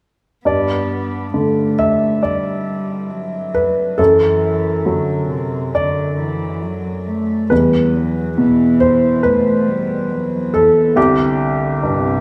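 A large studio's reverb, with a 1.2-second tail, surrounds this short neoclassical passage for piano and strings, and the two players sound as though they share one room. The mood is tender and intimate, moving at a rubato 68 BPM in 4/4 in G major, tuned to A4 = 437 Hz. The upright piano carries the accompaniment up front, its tone clear, woody and present, with long sustain and audible action noise. A single bowed cello plays a quieter second line, sounding warm and close, with a soft attack, light vibrato and an airy sul tasto bow. Both parts play from 0.5 to 12.2 seconds over a progression that moves from G through Dadd9/F# and Em to Csus2.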